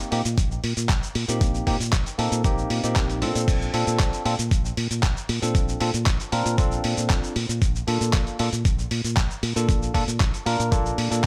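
Groovy and sunny, this short nu-disco clip rides a straight feel, with a bell-like, up-front tine electric piano touched by phaser and digital delay, a punchy fingered electric bass with envelope filter and sidechain pumping joining at 0.1 seconds, a gritty, overdriven dusty soul drum kit of cabasa, crash, handclaps and hi-hat, and a thumpy electronic kick entering at 0.4 seconds, all in a dry, close sound as the harmony moves from F7sus4/Bb to Bbmaj7 at 3.5 seconds.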